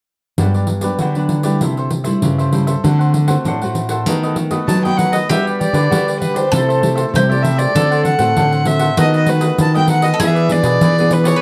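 A lively, festive samba and choro fragment in G major at 98 BPM rides a straight 4/4 feel built from a jingly pandeiro, a mellow, crisp picked cavaquinho, a fingerpicked classical nylon-string guitar with fresh strings, and a second nylon-string guitar with audible finger squeak in the background, the two guitars sharing the accompaniment and the bass. At 4.7 seconds a dark, woody fiddle enters up front with light vibrato, and at 5.3 seconds, as the second section begins, a bright bowl-back mandolin adds a picked second line on double strings. The harmony cycles through Gmaj7, C6, D7 and B7/D# before reaching E7, captured with close, detailed microphones and light reverb.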